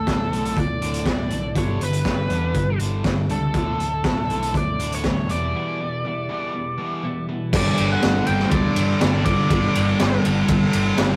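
A straight 4/4 pulse at 121 BPM drives this cathartic, anthemic quiet-loud alternative rock excerpt. A raw garage drum kit with a boomy kick and high-tuned snare sits up front beside a growly, punchy picked electric bass, while a tight distorted guitar riff and a twangy, clean twelve-string electric guitar's arpeggios sit in the background. Over the Dsus2, G6 and Em7 chords, a biting, overdriven lead guitar carries the melody. After a break at 5.5 seconds, the twelve-string stops, and at 7.5 seconds a double-tracked high-gain distorted guitar and a sludgy guitar enter with riffs on a G5 chord. It is all captured as a rough rehearsal-room recording with light reverb and saturation.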